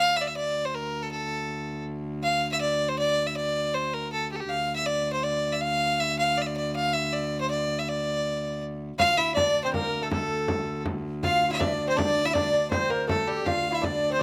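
A straight, driving triple-metre pulse carries this mysterious medieval dance, where a single bowed fiddle, biting and nasal, leads the melody up front over the ringing low drone of a fretted viola da gamba with light vibrato. At 9.0 seconds a delicate fingerpicked lute with gut double strings and an airy, chiffy tenor recorder sitting in the background enter on a second line, both touched by slapback echo, while a frame drum struck with hard hands adds percussion until 14.0 seconds. Recorded outdoors with little reverb, the sound is dry and open-air, and the passage is cut from a longer piece.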